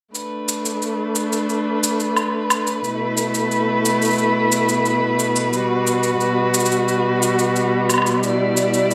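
A straight 4/4 pulse at 89 BPM from electronic-sounding cabasa and woodblock, re-recorded in a large room and sitting low in the mix, carries this intimate, wistful folktronica passage in B minor, cut from a longer piece, where an up-front bowed string quartet, one player per line, holds sustained chords with expressive vibrato and portamento in plate reverb, moving from Bm7 through Asus2/B and Gmaj7/B to Em7/B inside a wet small-room ambience.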